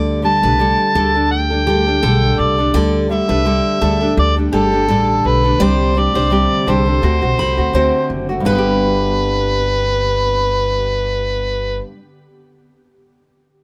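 A lightly swung sixteenth-note feel at 84 BPM in 4/4 carries this heartfelt, carefree acoustic pop excerpt in G major, moving through Dsus4, Gsus2, Csus2 and D7 before settling on G at 8.5 seconds. A gritty, amplified harmonica takes the up-front solo melody from 0.2 seconds with light vibrato and tongue slaps, over a thumpy, woody pizzicato upright bass and a fingerpicked classical nylon-string guitar. Behind them, a full-bodied picked steel-string guitar plays arpeggios until 10.6 seconds, and a very quiet ethereal, warbling pad holds sustained chords, all captured with close, detailed microphones and little reverb.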